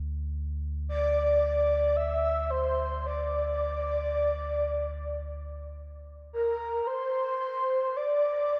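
A wet spring reverb with a 2.2-second tail and heavy echo surrounds this short ambient passage, cut from a longer piece, giving it a spacious, serene air. In an unhurried triple metre, a deep, round sub bass holds a sustained D2 from the opening moment, its sine tone mellow yet quick to speak. At 0.9 s a breathy, flute-like synth lead enters up front, sitting between Bb4 and E5, its soft attack and noise layer blending triangle and sine colours. Ensemble chorus, vibrato and analog delay lend this lead a gently shimmering, floating quality over the sustained low tone. The music shifts into a new section at 6.9 s, with both parts carrying on together until the close at 8.6 s.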